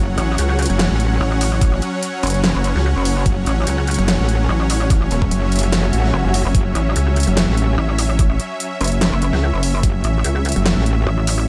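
Aggressive and menacing, this short cut from a longer heavy wobble dubstep track moves with a half-time, lightly swung feel. Two wobble basses sit up front, both driven by overdrive and chorus: one metallic and FM-toned, the other a pulsing, detuned, heavy sine sound that enters at 0.2 seconds. Alongside them, a lush supersaw pad holds sustained chords with a slow attack, its bright, detuned sawtooth layers pumped by sidechain. The overdriven drum kit brings a huge snare and bright hats, while a knocking electronic kick joins at 1.6 seconds. Around the midpoint the kick drops out briefly as an electronic swell sounds in the background from 5.9 to 6.5 seconds, then the kick returns. The mix is dry, with little reverb.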